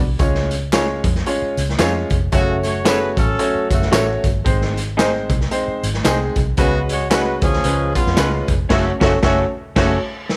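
Uptempo 1960s-style soul with an urgent, driving feel, this excerpt moves at 113 BPM in 4/4 with a swung eighth-note lilt, set in F# harmonic minor. A dark, round, foam-muted fingered electric bass opens the clip, joined at 0.2 seconds by a raw garage drum kit that sits up front with a punchy kick, a medium-tuned snare, hi-hat and crash, all saturated and gritty with a rolled-off top and a pumping small-room sound. A bright, brilliant baby grand piano comps alongside, with tambourine, maracas and group handclaps tucked in the background. From 0.7 seconds, an electric guitar through a small old amp adds picked stabs, slightly broken-up, compressed and lo-fi, set back in the mix. A smooth-topped horn section with light vibrato enters at 2.3 seconds to play a jazz-style second line over chords moving from C# through F#m, G# and C#7sus4 to C#7, before the whole band hits an accent on F#m at 8.7 seconds, all within a small room ambience.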